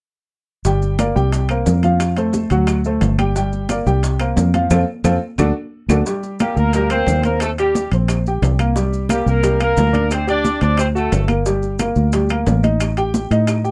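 Fiery and driving, this salsa excerpt in G minor moves at a brisk 178 BPM in a straight 4/4. It opens at 0.6 seconds as the rhythm section and a clear, slightly worn concert grand piano enter within the first second, the piano up front playing accompaniment over chords that cycle through Gm, C5, F and D7. A dark, foam-muted fingered electric bass sits prominently in the low end with a round, amped tone, while a dense percussion bed fills out the groove: ringing high-tuned congas played with soft hands, round low-tuned bongos with a compressed, saturated edge in the background, ringing metal-shell timbales, woody claves and grainy maracas. The band hits a shared accent from 4.7 to 6.1 seconds before the second section opens on Gm. At 6.4 seconds a mellow, vintage-sounding horn section takes the melody up front, its lines doubled in octaves with a light vibrato, moving over Eb6, C5 and a D7sus4 resolving to D7. 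The horns drop out at 11.3 seconds, leaving piano, bass and percussion to close on Gm and an A7 flat-five chord with its third omitted, in a snug booth ambience with a dark production.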